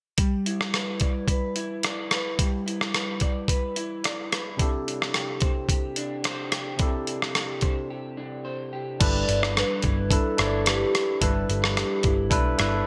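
A gritty, thumpy sampler-style drum kit sits up front with gated reverb in this sunny, nostalgic bedroom-pop excerpt in G major at 109 BPM, alongside a dark, slightly broken-up electric guitar with lush chorus and vibrato from the start, then a barky tine electric piano with light overdrive from 4.6 s, and, after a break, a round foam-muted bass and a hollow, woody clarinet-like synth lead with phaser from 9.0 s, all framed by bright 1980s-style digital production.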